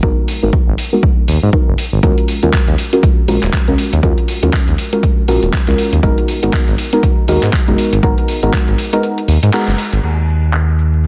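A swung deep house groove at 120 BPM in 4/4, its sixteenths pushed to a 58% swing, drives this hypnotic, smooth passage cut from a longer track. A punchy, layered electronic kick sits up front through most of the passage, dropping away at 8.6 seconds. Alongside it, a gritty, compressed sampler-style kit enters at 0.3 seconds with crash cymbal, handclaps, hi-hat and shaker, its hats, snare, cymbals and percussion muffled by low-pass filtering and set in studio reverb. Underneath, a sustained sawtooth-and-triangle synth bass with a fast attack sits up front and pumps with sidechain compression. Deep, dark chord stabs of detuned triangle, saw and sine tones, with ring modulation and a moving notch, decay through chorus, cassette tape coloring and tape echo, pumping against the beat while a filter sweeps across them, and they fall silent at 9.7 seconds. The harmony moves from Abm9 to Ebm11 and back to Abm9, a band accent lands just before the final bars shift to bass and kit alone, and the dense, heavily limited master carries light reverb.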